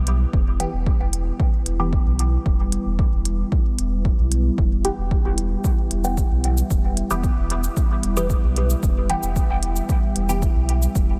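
Nocturnal and deep, this dub techno fragment rests on a single minor chord, with a punchy, up-front electronic kick and smooth layered electronic hi-hat and cabasa keeping a straight pulse. A round sine sub bass sits low with sidechain pumping, while a dark, full-bodied sawtooth pad holds sustained chords, softened by chorus and its own reverb. From 0.6 seconds a muted, nasal chord stab with a filter pluck drifts through phaser and dub echo, and the whole mix carries a light reverb.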